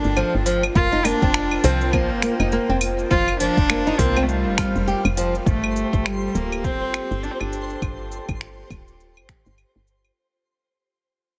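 Organic downtempo in G minor at 102 BPM with a 16th-note swing, earthy and warm, where a rich, reedy bowed cello carries the melody up front through delay and shimmer reverb until 7.7 seconds, over a warbling, nostalgic lo-fi pad with chorus and sidechain pumping, a woody, round FM bass that pumps along and gets a filter sweep during the fade-out from 5.5 seconds, a deep house kit of cabasa, claves, finger snaps and smooth hats joined by a deep electronic kick, fingerpicked flamenco guitar arpeggios with finger squeak from 0.2 to 5.3 seconds, and a faint twinkling granular shimmer in the background near the end, all within a heavily compressed, radio-like sound.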